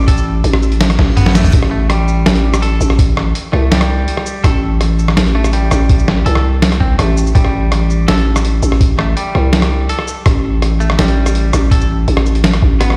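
A bright, twangy clean electric guitar picks arpeggios through dub echo over a growling, buzzy 808-style bass up front from the start of this tense, cinematic half-time drum and bass at 165 BPM in A minor; at 0.1 s a gritty, pitched-down boom bap sampler kit of hi-hat, rim click, shaker, snare and toms enters with a thumpy electronic kick, a faint reverse cymbal and drum fill arrive at 1.0 s, and the mix rings with light reverb as if played on a big sound system in a bare stone room.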